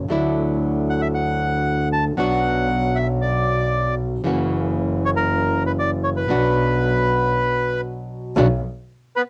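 A fingerpicked classical nylon-string guitar opens this tense, sultry tango fragment in B harmonic minor at 116 BPM with a rubato feel, joined at once by a bowed double bass, biting and earthy with light vibrato, and at 0.9 seconds by a reedy, bright bandoneon carrying the melody with a cassette-tape color, all three up front in a dry home cassette recording as the harmony moves through Dadd9, Bm, F#7 and Bm before a break at 7.3 seconds settles onto B5.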